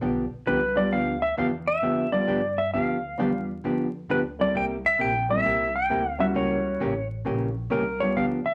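A clean, up-front lap steel carries the melody with slide and volume swells over a dark hollow-body jazz guitar, a mellow, slightly detuned upright piano with audible action noise, and a thumpy gut-string upright bass in this playful, swinging western swing excerpt at 133 BPM, moving from G7 to C7 and C#dim7 inside a small, wet room with vinyl crackle.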